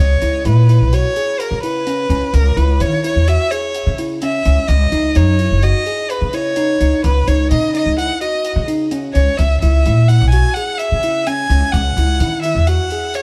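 A clear, focused violin and a woody, thumpy upright bass open this brooding progressive instrumental together, setting a driving pulse at 128 BPM in an uneven 5/4 meter with a straight feel in C# dorian. The violin is a single bowed player with vibrato, carrying the melody up front through plate reverb and tape echo, while the pizzicato bass on gut strings sits just as close and plays the firmest part of the mix. From 0.2 seconds a bell-like tine electric piano adds clean, direct arpeggios in a middle register, also tinged with tape echo, and an acoustic hi-hat joins deep in the background with a mid-forward tone and rolled-off top, set in a stone room. The harmony moves from C#m7 through a passage of N.C. to a stark G#5 fifth chord, then a D#m7 over a C# bass, C#m, and finally an F#5 over C#. The overall production is dark and warm with light reverb, and this short cut from a longer piece ends at 13.2 seconds, with the bass dropping out just before.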